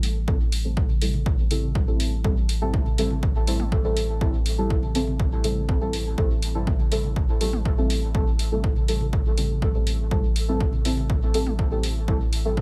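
A hazy, hypnotic dub techno passage in A minor at 122 BPM in straight 4/4 opens on a dark, soft chord stab sounding Am7 through chorus, phaser, dub echo and sidechain pumping, over a round sine sub bass that also pumps and a layered, tape-toned electronic hi-hat, with a punchy analog kick arriving at 0.3 seconds and overdriven electronic congas and toms sitting in the background from 0.9 seconds with dub echo, all in a dry, close mix that feels cut from a longer piece.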